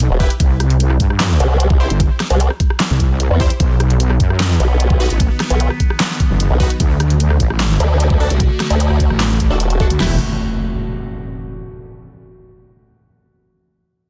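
Driving a half-time 150 BPM groove in 4/4, this chaotic, aggressive heavy wobble dubstep drop in E minor pairs two overdriven drum kits, one of them up front, with a knocking kick, huge snare, crash, hi-hat, rim clicks and handclaps in studio reverb, with two saturated, chorused wobble basses, one resonant and detuned sawtooth, the other a formant-swept pulse wave, under punchy supersaw stabs through phaser and digital delay, while an evolving, bright wavetable pad with sidechain pumping joins at 4.6 s over chords moving C, B and D before an electronic impact lands on E minor at 10.0 s in a dense, heavily limited master.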